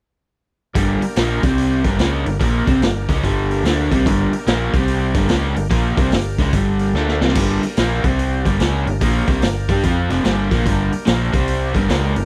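Blues rock and southern rock power trio in G minor at 146 BPM with a swung 4/4 feel, this gritty, heavy excerpt pairs a crunchy, bright, double-tracked overdriven guitar riff with a dark, round, foam-muted bass and a saturated, boomy garage drum kit (with a drum fill at 6.9 seconds), while a thick overdriven tonewheel organ holds sustained chords through a slow rotary speaker in the background, all captured in a dry, close 1970s-style studio sound.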